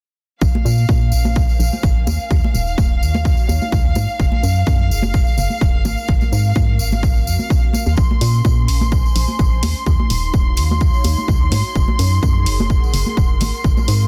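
A punchy, tape-warm electronic kick sits up front in this bittersweet, soulful piano house excerpt, over a hollow, organ-like FM bass with a filter sweep, veiled muted chamber violins holding sustained chords, bright tambourine and congas, and a breathy chorused pad in the background, with the bass, violins and pad pumping to the sidechain and an electronic hi-hat joining at 8.2 s in a dense, dry, heavily limited mix.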